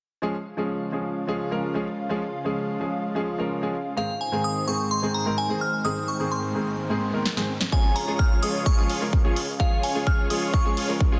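Opening on a clear concert grand piano and a lush unison pad pumping in sidechain over Db major, this euphoric, anthemic festival progressive house excerpt at 128 BPM adds a glassy, crystalline synth bell melody with chorus, phaser and delay at 4.0 seconds, then a faint riser and a house kit fill carry it into a build-up at 7.7 seconds, where a punchy electronic kick, a huge detuned supersaw riff under a low-pass filter and a very quiet, menacing saw bass join the dense, heavily limited mix.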